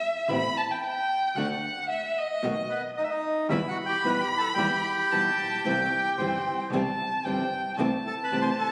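A reedy, up-front bandoneon carries the melody from 2.7 s in this tense, passionate tango excerpt at 112 BPM in rubato 4/4, after an expressive violin solo opens at 0.0 s and then continues as a warm second voice full of vibrato and portamento, while a fingerpicked flamenco guitar with bright, fresh strings and a biting, earthy bowed double bass accompany, the harmony settling into E minor at 3.5 s, captured on a phone in the room with a wet concert-hall reverb and compression.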